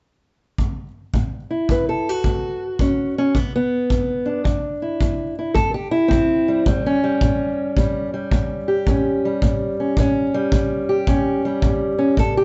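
A studio room with moderate reverb and a dark, rolled-off top frames this laid-back, rollicking acoustic country blues fragment in A mixolydian, swinging at 109 BPM in 4/4. A punchy, roomy kick drum played with brushes enters at 0.6 s, and at 1.2 s a boxy, up-front fingerpicked archtop guitar carries the melody, finger squeak audible on the strings. The guitar moves from A through E5 to a closing A7 at 5.6 s.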